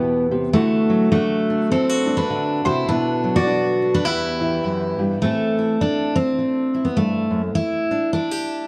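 A swung 4/4 lilt carries this reflective, melancholic acoustic folk fragment, where a full-bodied picked steel-string guitar with tape echo sings the melody over an up-front fingerpicked steel-string guitar, joined by a metallic, nasal lap resonator slide line and woody, slightly detuned upright piano arpeggios in the background and a very quiet, reedy, breathing pedal harmonium from 0.5 seconds, until the resonator drops out at 5.0 seconds and the piano and harmonium at 5.2, leaving the two guitars alone over Am and Em7 in a dark, lightly reverberant mix.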